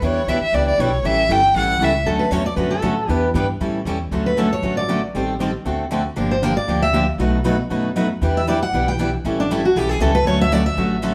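Lively and playful, this short cut from a longer jazz manouche piece swings in 4/4 with a brisk acoustic string-band drive. A bowed violin opens with the melody, its expressive tone shaped by vibrato, a soft attack and portamento, and it is heard only in the first 2.0 seconds. Beneath it a picked dreadnought steel-string guitar with fresh strings and a bright, boxy swing-style guitar carry the accompaniment throughout. A woody pizzicato upright bass anchors the low end. From 2.1 seconds a second steel-string guitar, a full-bodied jumbo, takes up a second line that becomes a solo at 4.1 seconds, moving through changes such as Dmaj7, Am7b5, Gm7 and B7. The band plays live in one room, and a wet studio reverb gives the ensemble a sense of close, shared space.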